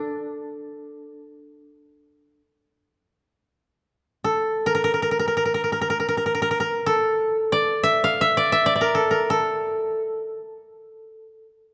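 The recording has a dark, warm production set in a moderate concert hall reverb that lingers around the instrument. This is a short, meditative piece of Japanese traditional chamber music, austere in mood and taken from a longer work. A solo koto plays alone throughout, in free time and in D hirajoshi, moving between D4 and F5. Played with fingerpicks, its tone is woody and dry, placed up front in the mix. The opening idea runs to 3.6 seconds and then returns, carrying on until the koto stops at 11.6 seconds.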